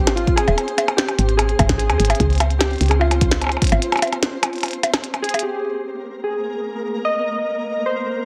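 IDM at 148 BPM, intricate and melancholic, cut from a longer piece and moving from Ab to Dbmaj7 before the harmony drops away at 5.4 seconds. Warbling, nostalgic lo-fi synth keys carry the melody with chorus, 12-bit sampler grit and tape echo over a flickering, granular texture, while a woody, round FM bass with tube saturation sits up front until 3.8 seconds. A glitchy kit of clicky, low-pass-filtered hats, percussion blips and a tiny snare is soon joined by a deep electronic kick, both re-recorded in a small room, before a break and a drum fill at 5.2 seconds lead into the closing section.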